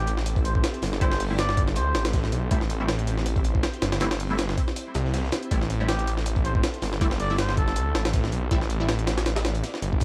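A cup-muted trumpet carries the melody in two brief, veiled phrases with vibrato and scooped notes, its jazz-style line trailing off into dub echo, in this frenetic yet atmospheric drum and bass and jungle excerpt. Up front, a pitched-up, compressed, gritty sampler-style kit hits with a thumpy kick and medium-tuned snare, while a very quiet, dark and saturated breakbeat kit sits underneath, and a thick, beating, menacing detuned saw bass drives the low end. An ethereal, warbling pad holds Am7 throughout, joined from 1.0 seconds by faint, muted chord stabs with a phaser, all within a dry hardware sound with light reverb and vinyl crackle.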